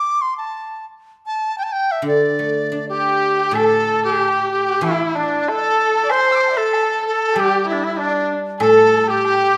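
A moderate recital-hall reverb gives this festive, pastoral Chinese chamber ensemble piece an open, airy sound, heard here as a fragment cut from a longer work. It moves at a straight 94 BPM in 4/4. A large dizi opens the piece on its own and carries the melody up front, its bamboo tone reedy and pure with a buzzing membrane, soft attacks and gentle vibrato. A fingerpicked guzheng enters at 2.0 seconds with silvery, ringing accompaniment in its lower register, and a single bowed erhu follows at 2.9 seconds with an expressive second line full of vibrato and portamento. At 3.6 seconds the music moves into a new section as a very quiet woodblock adds light percussion in the live room beneath the bright, reedy dizi.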